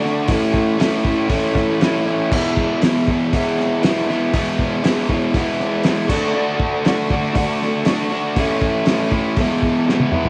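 Garage rock with a raw, swaggering mood, this short cut from a longer piece pairs an up-front, double-tracked overdriven electric guitar riff moving through A, E and D with a cloth-damped, thuddy kit of fat snare, tight kick, toms and dark, muffled cymbals in a small lo-fi room under light studio reverb, ending on a drum fill at 9.9 seconds.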